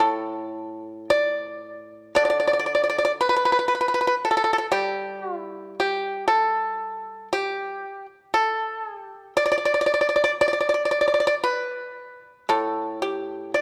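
Played rubato over a loose 4/4 pulse, this short passage of Chinese traditional music has a pastoral, elegant mood. A solo pipa, plucked with fingerpicks, carries the whole 13.6 seconds up front, its dry, percussive attack ranging from A2 to D5. Light reverb and a dark, warm production give the piece, cut from a longer work, a mellow setting.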